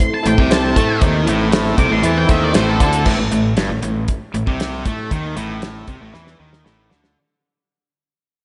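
Classic rock in A minor at 117 BPM, this gritty, swaggering clip opens with a dark octave-fuzz lead guitar solo over a reedy, worn electric piano with fast tremolo and a piping tonewheel organ, all three stopping near 3.0 s as the fade-out begins, while a dry, up-front 70s drum kit with a fat snare and dark cymbals drives throughout, joined from 0.3 s by a bright tight distorted guitar riff, a background overdriven guitar and a fuzzy fingered bass, closing on a drum fill from 6.1 s in a big arena sound with lush hall reverb.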